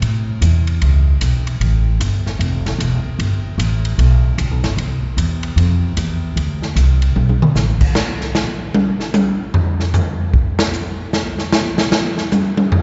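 A swinging big-band drum kit with punchy kick and dark cymbals drives this brassy, joyful big band swing cut in C major at 151 BPM, joined up front by a woody, thumpy pizzicato upright bass until 7.9 s, while a drum fill at 7.2 s leads into a drum solo from 8.0 s, all bathed in a cathedral-like reverb with a muffled top end.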